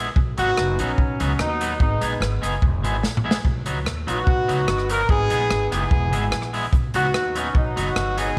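Opening with a twangy, slightly broken-up electric guitar with slapback echo and a woody, thumpy pizzicato upright bass, this upbeat, cheerful ska excerpt at 146 BPM in B major brings in an airy, punchy swinging big-band drum kit at 0.2 seconds and an up-front horn section with light vibrato and slapback echo carrying the melody from 0.4 seconds, over a B, G#m and E progression in a small room with light reverb and a drum fill at 3.0 seconds.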